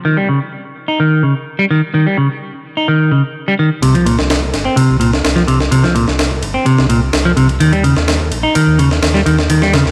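A semi-hollow electric guitar opens this funky, playful breakbeat excerpt alone, playing a clean, hollow-bodied riff up front in the mix, softened by a low-pass filter and trailed by tape echo. At 3.8 seconds a sampler-style drum kit arrives with a thumpy kick, a high-tuned snare and ride cymbal, sounding compressed and pitched up, its room sound caught in a large space. An overdriven fingered bass enters at the same moment, round and amped, sitting low beneath the guitar. From that point the track builds up, with a filter sweep moving across the clean guitar until 9.9 seconds. At a straight 127 BPM in 4/4, the whole piece carries a gritty, dry hardware character under light reverb.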